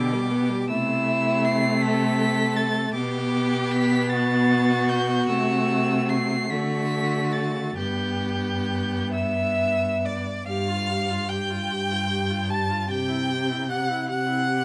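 Moving in 6/8 at 44-54 BPM in dotted quarters, this slow romantic movement for string quartet breathes with a flexible rubato, lyrical and serene in G major. Throughout, the first violin sings the melody high in its range, its bowed tone smooth and even with vibrato. The second violin sits up front on an inner line, sliding expressively between notes with portamento. Beneath them the viola's accompaniment sounds focused yet distant, while the cello anchors the bass up front with soft attacks and its own expressive portamento, and all four players share a rich, vibrant sound. The harmony settles from G toward D and back to G before shifting at 10.5 s to Fadd9 over a G bass and then resolving onto C, where this fragment of a longer piece breaks off at 14.6 s. Close, detailed microphones capture the players within a moderate recital hall reverb.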